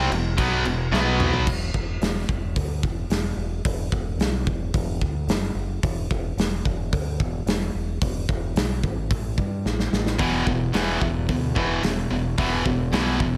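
A bright, high-gain distorted guitar sits up front in this menacing, aggressive hard rock excerpt at 110 BPM in 4/4, playing a riff alongside an overdriven semi-hollow guitar that stays in the background with a hollow-body tone. Both guitars sound only briefly at the opening, then return at 10.2 seconds to carry the riff to the close. Throughout, the growling fingered electric bass, overdriven and up front, holds the low end with a big acoustic drum kit whose punchy kick, medium-tuned snare, hi-hat, crash and toms have a dark, smooth, big-room weight. Drum fills mark the turn at 0.9 seconds and again just before the guitars come back. The harmony centres on E power chords, with a passing Gsus2/A, and the track sits in a small room with light reverb.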